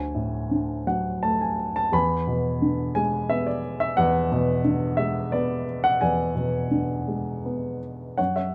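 Cool and moody, this brief fragment of lyrical classical solo piano drifts in a gentle 3/4 with a flexible, rubato feel. A dark baby grand carries everything on its own from 0.0 to 8.5 seconds, ranging from D2 up to B5. Its mellow tone sits up front and feels intimate, with audible action noise and a short sustain that keeps each note close. The harmony opens on Dmaj7 and shifts to E7 at 1.9 seconds. A light reverb frames the instrument, and the tuning sits slightly above standard pitch at A4 = 441 Hz.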